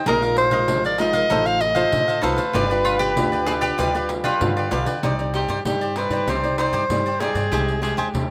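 Bittersweet and yearning, this short samba and choro excerpt at 97 BPM in 4/4 settles into C minor at 5.0 seconds, with a clear, up-front soprano saxophone carrying the melody with light vibrato, subtone and scooped notes over crisp picked cavaquinho with slapback echo, fingerpicked nylon-string guitar with audible finger squeak, woody pizzicato upright bass and a jingly, distant pandeiro, while a bright double-strung mandolin adds a brief second line from 2.8 to 5.0 seconds in a dry, open-air sound.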